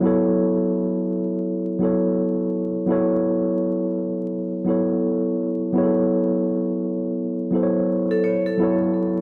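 Nostalgic and melancholic, this short lo-fi hip hop fragment, cut from a longer piece, moves at 84 BPM in 4/4 with a swung sixteenth-note feel in F# minor. A mellow tine electric piano carries the accompaniment throughout the 9.2 seconds, sitting clean and up front between F#3 and C#5, softened by a low-pass filter and cassette tape coloring. It rests on an F#m7 chord before shifting to B9sus4 at 8.6 seconds. Near the close, at 8.1 seconds, a vibraphone played with hard mallets adds a brief second line between A4 and C#5, its metallic, ringing tone carrying a medium motor vibrato and an analog delay beneath the same filtering and tape treatment. A lush hall reverb and vinyl crackle give the home cassette recording a hazy, lived-in atmosphere.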